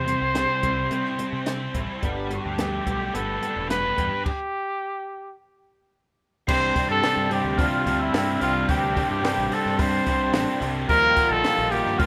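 A warm, vibrato-laden trumpet carries the melody up front in this carefree, upbeat indie rock excerpt at 108 BPM in C major, riding over a twangy electric guitar riff through a small old amp with spring reverb and a thick, fuzzy guitar riff thickened by chorus and slapback echo. A growling overdriven picked bass and a compact cocktail drum kit with a high-tuned snare and punchy kick anchor the groove, with a stop from 4.3 to 6.5 seconds. At 6.5 seconds a soft, bell-like glockenspiel played with rubber mallets adds a very quiet second line, all captured in a rough home demo mix with small room ambience.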